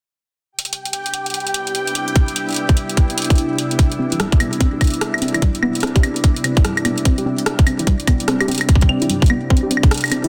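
Dense, heavily limited and lightly ambient, this wistful, intricate IDM excerpt with a swung feel opens with a bright, bubbling stepped-filter texture under a filter sweep, joined by dry, metallic analog drum-machine hats, rim clicks and woodblock, a glassy FM pad holding a Cmaj9 chord with chorus and gritty sampler character, and an up-front, tight electronic kick that drops out at 3.4 seconds, before a dark, warbling, lo-fi pluck with dub echo enters with arpeggios from 4.0 seconds.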